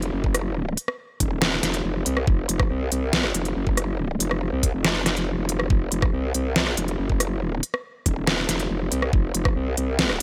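A half-time 4/4 groove at 140 BPM drives this aggressive, menacing slice of heavy wobble dubstep, where an up-front dubstep kit of deep snare, crisp hats and rim clicks runs throughout, a knocking, tape-warm electronic kick enters at 0.2 seconds, and a saturated, formant-filtered growl bass with chorus and overdrive wobbles low beneath it all in a dry mix.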